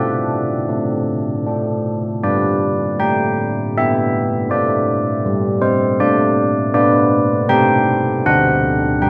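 A straight 3/4 lilt at 79 BPM carries this short classical excerpt of a church-bell tune, festive yet serene in mood. A solo carillon, placed up front and spanning D3 to G5, rings with a dark bronze tone, a minor-third overtone and the rounded attack of a padded clapper, moving through D5, G, a brief unharmonised moment at 6.7 seconds, then Am7/C and D7. Close, detailed microphones and light reverb keep the bells intimate and clear.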